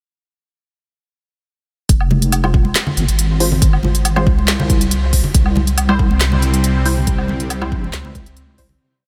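A half-time beat of up-front deep kick, woody snare, smooth hats, claps and low woodblock, with bright, dry conga hands echoing in the background, drives this cavernous, dark deep dubstep piece, where a saturated, up-front wobble bass with chorus holds long notes from 1.9 seconds, muted, filtered chord stabs drift through phaser and dub echo, and a tense, string-like drone with vibrato arrives at 5.9 seconds as everything fades out from 6.5 seconds.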